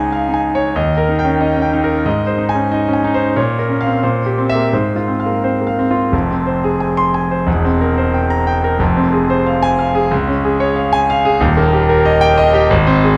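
A brilliant concert grand piano opens this short passage alone, its deep bass and polished, up-front presence carrying a virtuoso classical study in F minor. The mood is passionate and agitated, set in 2/4 at 91 BPM with a rubato feel that lets the time bend and push. The piano ranges from Eb1 up to C6, moving through Db, Eb and Ab before darkening toward Bb minor and a C7 over Bb. At 6.1 seconds the opening idea returns on F minor, passing through C7 over E and back to F minor before closing on Db and Eb. A moderate recital hall reverb surrounds the instrument within a dark, warm production, and the recording is cut from a longer piece, ending at 13.2 seconds.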